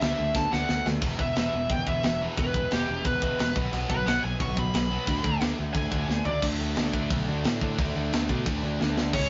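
A bluesy overdriven lead guitar sits up front, its distorted solo carrying the melody from 0.0 to 6.4 seconds in this upbeat, energetic punk rock cut at 178 BPM. Beneath it, three guitars play riffs: a very quiet overdriven electric guitar, a double-tracked, compressed fuzz guitar and a tight distorted guitar, the last two in the background. A growly, punchy picked bass and an acoustic metal drum kit with a rolled-off top drive the straight 4/4 pulse, with drum fills including one at 6.1 seconds, and light reverb and a rough rehearsal-room sound topping out at 7.5 kHz give it a raw edge.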